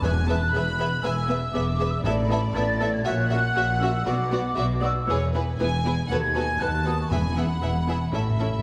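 This cinematic fragment opens with the full orchestra sounding at once: bowed violins carry a soaring, adventurous melody, with a second violin line and a lush viola accompaniment beneath them. A large flute ensemble plays a hollow, airy second line high above the strings in a mellow, distant straight tone. The bass weight comes from a rich double bass section, the loudest part, and a focused chamber cello section, both bowed with vibrato. Timpani struck with hard mallets sit in the background, articulate and dry, first from 0.0 to 2.8 seconds and then returning at 7.1 seconds, with a brief fill from 8.1 seconds to the close. The whole ensemble is bathed in a wet scoring-stage reverb that gives the passage a sweeping, expansive sense of space.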